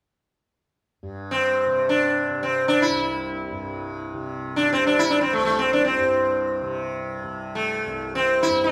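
A plectrum-plucked sitar sits up front, its buzzing tone and shimmering sympathetic strings carrying a devotional, radiant melody in raga bhupali on C, entering at 1.3 seconds in free time. Beneath it, a softly plucked tanpura sounds from 1.0 seconds as a low, glowing drone with its own shimmering buzz. This short Hindustani classical excerpt, cut from a longer piece and tuned to A4 = 439 Hz, is bathed in a moderate recital-hall reverb.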